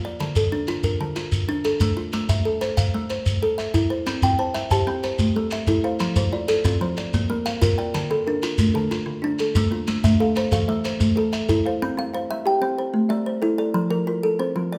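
Warm and rippling, this excerpt of southern African traditional music moves in an mbira-style interlocking cycle at 124 BPM in a straight 12/8, with a plucked kalimba opening alone in bright, woody, up-front arpeggios spanning D3 to A5 over a progression that starts on Dm and moves through Am, C, F and Bb. A grainy, mellow shekere joins almost at once and plays until 11.6 seconds, while a second kalimba with a hollow-box, thumbnail-plucked tone sits just behind the first from 4.2 seconds. The two kalimbas carry the closing stretch together in a moderate recital-hall reverb.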